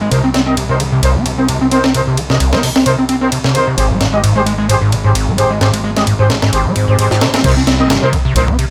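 A squelchy, resonant acid bass riff opens this gritty, swaggering breakbeat cut, its distorted square-wave tone sitting up front with a subtle chorus and tape echo. Beneath it, a growly fuzz electric bass holds the low end. A sampler-style break kit of thumpy kick, high-tuned snare, hi-hat, ride and crash arrives almost at once, compressed and thinned by high-pass filtering, with a lightly swung sixteenth feel and a small room around it. Tight, distant brass stabs cut in with a lo-fi 12-bit sampler character and their own tape echo over a Cm7 to Abmaj7 progression, while a filter sweep works on the acid bass through the opening stretch. A faint electronic swell sits in the background from 6.7 seconds, and at 7.4 seconds the music drops back to Cm7 for a short closing section, with the acid riff and drums carrying through to 8.7 seconds.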